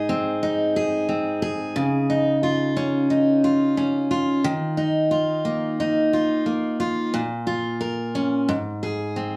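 Pop, heartfelt and easy-going, carried by a single picked steel-string acoustic guitar that sits up front and plays alone through the whole clip, which is cut from a longer piece. The dreadnought guitar sounds woody and full-bodied, with the warmth of old strings, and is set in light small-room reverb. It moves through Ab, Dbadd9, Ebsus2 and Bbm before settling back on Ab near 8.5 seconds.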